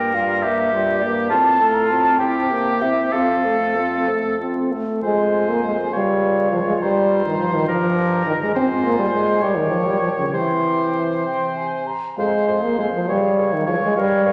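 In a 6/8 at 63-70 BPM (dotted quarters) with rubato, this lively, graceful classical-period wind quintet movement, cut from a longer piece, opens in F major and turns to F minor at 5.0 s. A hollow, pure silver flute with vibrato carries the melody, joined by a clear oboe on the second line, while an up-front French horn with a soft attack and a smooth clarinet set further back supply the accompaniment over a mellow bassoon bass. The quintet sits in a wet scoring-stage reverb with tube saturation and vinyl crackle, lending the sound a vintage glow.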